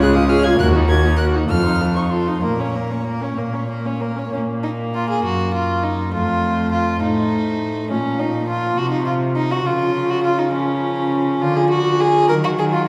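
A wet scoring-stage reverb places this string quartet further back in the room, giving a stormy, dramatic classical-period movement in Bb minor and 6/8 a spacious halo. The pace is quick, counted at 62-69 dotted-quarter beats per minute, yet the feel is rubato, and all four players use period-style gut strings. The first violin carries the melody high above the ensemble, its airy, nasal bowing sitting in the background, while the second violin's reedy line sits up front and close. The viola fills the middle with a smooth-topped accompaniment, and the cello anchors the bass with a rich tone and light vibrato, also up front. The passage states its opening idea from the start and again from 4.3 seconds, moving through harmonies such as Ebm, F7, Bbm and a lush Gbmaj13 before the fragment ends.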